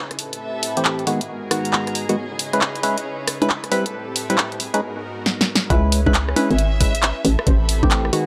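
A punchy analog drum machine of congas, handclaps, hi-hat, rim click and a short-roomed snare swings through this bouncy, moody two-step garage fragment over a smooth, detuned sawtooth pad and dark, distant chamber strings, both pumping, while a hollow, wave-folded organ stab with phaser and tape echo enters at 0.8 s; after a drum fill, the drop at 5.7 s brings a knocking FM bass, a layered electronic kick and a lush, bowed violin melody with vibrato, all in a gritty hardware sound with light reverb.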